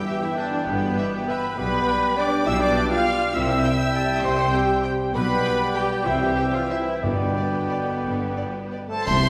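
A distant violin section carries the melody of this elegant, sweeping orchestral ballroom waltz in 3/4 with a rubato feel, while a lush second violin section, an airy flute, an oboe and a very quiet clarinet add second lines over viola and bassoon accompaniment. Dark, punchy trombones and smooth-topped French horns hold sustained chords, a close-miked trumpet adds mellow stabs, and the cellos and double basses enter with the bass at 0.7 seconds. Soft-mallet timpani join at 6.1 seconds before bright cymbals and bass drum mark a band accent at 9.1 seconds, all heard from further back in a reverberant scoring stage in this fragment cut from a longer piece.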